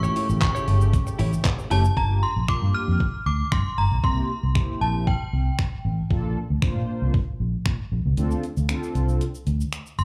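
A straight, driving dance-pop groove in 4/4 opens this bittersweet fragment of a live club set heard through the venue's PA, with a thumpy, overdriven 8-bit drum machine of kick, hi-hat, handclaps, finger snaps and shaker up front beside a round, foam-muted fingered bass that pumps against the kick, while a brassy, detuned synth brass line with filter sweeps, a lush unison pad and a bright, clean, direct-recorded guitar riff fill out the sound, and a ringing, warbling FM chime melody with chorus, tremolo and delay floats on top; the pad and guitar drop out at 1.9 seconds, the chime stops at 5.8 seconds, and the kick falls away at 8.2 seconds over jazzy seventh chords in a dry mix.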